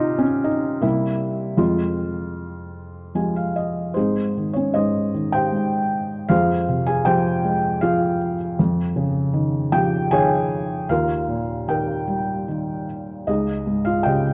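Reflective and wistful, this short classical passage for solo felt-muted upright piano unfolds in a rubato 3/4 at 77 BPM, moving from F minor through C7 and Fmadd9 before a brief fill at 2.8 seconds leads into Ab major at 4.0 seconds. The piano sits up front with a soft, intimate, thick-felt tone and audible action noise, spanning Db2 to Ab5 as the harmony drifts through Fm, Dbadd9/F and Ebadd9 to settle on Dbadd9. A moderate concert hall reverb and dark production frame this fragment of a longer piece.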